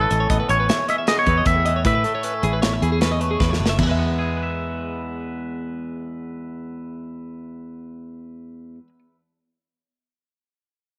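Wistful and playful, this math rock and Midwest emo fragment moves in a straight 5/4, cut from a longer piece. A bright, compressed electric guitar carries a twangy picked melody until 3.4 seconds, while a second, up-front electric guitar with a warm, clean tone plays accompaniment throughout. A twelve-string electric guitar adds picked arpeggios in a high register, and a direct, foam-muted fingered bass sits up front beneath them. The polished, airy acoustic drum kit, with its medium-tuned snare and punchy kick, plays a fill that leads into the shift from Amaj9 to E at 3.8 seconds, then drops out at 3.9 seconds. Light reverb and a small room ambience frame the playing.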